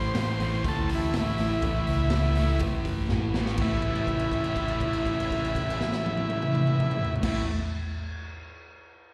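A buzzy, overdriven combo organ carries the melody from the first instant, alongside a dark, double-tracked fuzz guitar riff with slapback echo and a round, hollow-body bass, with the drum kit entering at 0.1 seconds. This rowdy, raw garage rock cut moves at 122 BPM in a straight 4/4, opening on an A chord. The organ sits up front with a light vintage vibrato, and the picked fuzz guitar shares that forward spot. The punchy short-scale bass is amped and grinds with overdrive, while the acoustic kit sounds gritty and saturated, with a medium-tuned snare, a punchy kick and a rolled-off top in a pumping small room. A drum fill from 3.1 to 3.6 seconds leads into a second section over an A5 chord, where a held note rings until 7.2 seconds. The whole fragment has the feel of a live gig heard through the venue's PA, with light reverb and recital hall reverb around the band.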